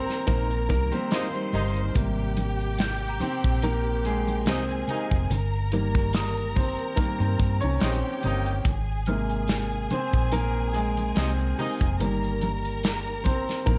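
Lush 1970s-style soul in Ab major at a relaxed 72 BPM in 4/4, with a light swing on the sixteenths and a warm, lush mood. A boxy grand piano carries the solo across the whole passage, supported by a round hollow-body electric bass and an up-front studio drum kit with a punchy kick and medium-tuned snare, while damped, thick-skinned congas sit very quietly underneath. A slightly broken-up electric guitar through a small old amp plays a brief riff in the background from 0.3 to 1.9 seconds, and a tight pop-style horn section adds stabs with vibrato. Higher up, a distant symphonic violin section bows an intense second line, and a delicate, bell-like celesta, slightly out of tune, adds sweet background texture from 2.8 seconds. The harmony moves between Cm7 and Abmaj9 colours, and the production is dark with light reverb.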